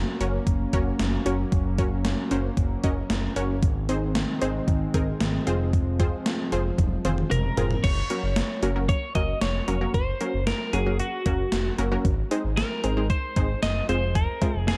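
A straight 4/4 groove at 114 BPM drives this nostalgic, wistful synth-pop excerpt, set by a gated 80s digital drum machine whose thumpy kick, overdriven gated-reverb snare, hi-hat, cowbell, toms and crash sit up front with a sampler-style punch. Beneath it, a smooth gliding synth bass holds the low end with mellow portamento and vibrato, while a bright, detuned unison pluck carries the accompaniment with a filter sweep and a noise layer. A shimmering, warbling pulse-width pad holds sustained chords through the opening over a Gb, Ab and Fm progression, until a drum fill at 6.8 s leads into the second half and the pad drops out at 7.8 s. A clean, twangy twelve-string electric guitar takes the melody from 7.3 s, compressed and touched with tape echo. Light reverb and digital ambience frame a dark, warm production.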